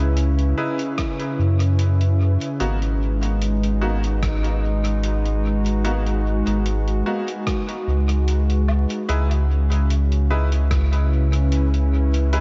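A round, mellow sub bass sits up front in this spacious, meditative ambient dub fragment, beneath a dark, warbling, detuned pad with chorus that holds C#m7 and G#m7 chords, while a woody, slightly off-pitch upright piano with audible action noise drops bright stabs into dub echo from 0.6 s, a muffled, pitched-down sampler kit of hi-hat, rim click and woodblock sits low in small room ambience and echo, and an overdriven electronic kick adds a deep, layered thump from 1.0 s to 10.9 s, over a bed of light reverb and vinyl crackle.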